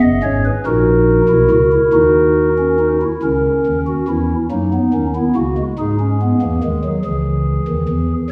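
A solo pipe organ on a soft, hollow stopped-flute voice sits up front in a reverberant recital hall, spinning a lively, joyful baroque-style four-part fugue in a straight 6/8 that spans from deep low notes to mellow upper lines, with a new section arriving at 3.2 seconds before this brief cut from a longer piece ends at 8.3 seconds.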